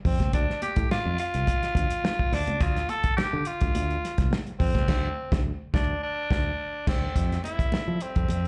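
This excerpt sounds like a live club gig heard through the venue's PA, with a light club reverb around the band. It's a cool, hypnotic funk groove in D minor at 106 BPM, riding a straight 4/4 feel and sitting on a Dm chord for most of its length. Up front, a raspy, gritty tenor saxophone carries the melody between C4 and A4, its punchy, vintage tone dressed in plate reverb and slapback echo. Beneath it, a growly, bright fingered electric bass and a dry, dark soul drum kit with a tight kick, medium-tuned snare, hi-hat and dusky crash cymbals drive the groove, while high-tuned congas with a thin skin, played with hard hands, add echoed accents in the background. The band hits an accent from 4.9 to 7.2 seconds. At 7.1 seconds a fat, lightly overdriven tonewheel organ with key click and slow rotary speaker slips in behind with sustained chords, and at 7.2 seconds the harmony moves to Fmaj9.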